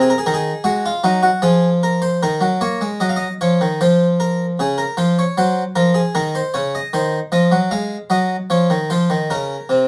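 A brilliant, close-miked Flemish-style harpsichord with octave strings plays alone and up front throughout this driving, solemn baroque-style two-part invention, a short fragment cut from a longer piece, in 3/4 at 76 BPM and tuned to A4 = 439 Hz. Its plucked, full tone spans C3 to F5 in a small room with moderate reverb. A brief opening over Ab7/C and Fmadd11 gives way at 2.2 s to a longer passage moving through Ebm11, Bbm7/Db and Cdim/Eb before settling on Db at 8.5 s.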